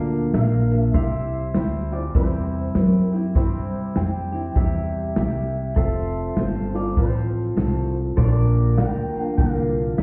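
Heard muffled through a wall with stone-room reverb and vinyl crackle, this sunny, nostalgic honky-tonk and classic country excerpt swings at 100 BPM in 4/4 in C mixolydian over Bb, C and F chords, with a twangy, slightly broken-up electric guitar through a small old amp carrying the melody with analog delay, a full-bodied jumbo steel-string acoustic with old strings picking the accompaniment, a clean pedal steel with lush chorus and volume swells holding sustained chords in the background, a dark, thumpy gut-string upright bass up front, and a punchy, airy country drum kit of kick, snare and hi-hat entering at 0.3 seconds.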